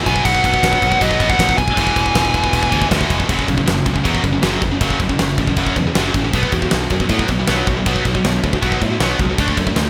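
Aggressive and dark, this heavy metal excerpt drives a high-gain, double-tracked distorted guitar riff over a growly, punchy picked bass and a big acoustic drum kit with a fat snare, punchy kick and bright crashing cymbals in a stone room, while a nasal, overdriven lead guitar through a parked wah sings a brief melody that stops at 2.9 seconds.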